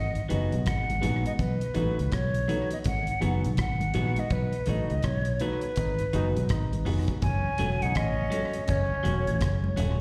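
Swung sixteenths in 4/4 drive this uplifting roots reggae excerpt, carried by a round, punchy fingered bass up front, a dry, damped 70s drum kit with tight kick, hi-hat and rim click touched by tape echo, and very quiet, thin-skinned congas played with soft hands. A hollow, close-miked concert flute sings the vibrato-laden, tongued melody through tape and slapback echo, over a twangy, compressed clean guitar, woody piano stabs tucked in the background, and a faint organ with key click and slow rotary. The band hits an accent from 4.3 to 7.2 seconds, and a clear trombone enters with a solo second line at 5.8 seconds, all heard through a venue PA with light recital hall reverb.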